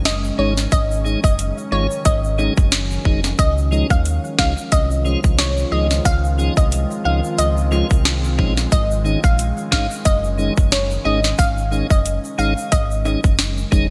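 A bright 1980s-style digital sheen and light reverb frame this sunny, bouncy dancehall excerpt in Db major at 90 BPM, where an overdriven, up-front electronic drum kit with tight kick, sharp snare and metallic hats joins a deep sine sub bass, a glassy, crystalline wavetable pluck melody with chorus and digital delay, a piping tonewheel organ turning through a slow rotary speaker from 0.4 seconds, a moody, detuned sawtooth pad breathing with sidechain pumping, and acoustic egg shaker and timbales tucked in the background.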